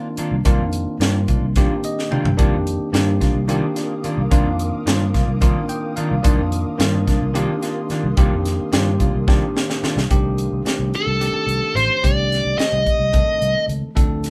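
A driving 7/8 groove at 218 BPM in eighths anchors this slick electric jazz fusion excerpt in C dorian. A crisp, high-tuned snare and punchy kick lead the up-front drum kit beside a round, dark fingered bass, while bell-like tine electric piano chords on Cm11 and clean guitar stabs fill the middle, and an ethereal, chorused pad hovers in the background from 3.3 to 10.1 seconds. The harmony moves to Cm69 at 10.1 seconds, where the guitar stabs have stopped, and a bluesy, distorted lead guitar steps forward with a short melody from 11.0 seconds, all heard in a moderate studio room with a live-band feel.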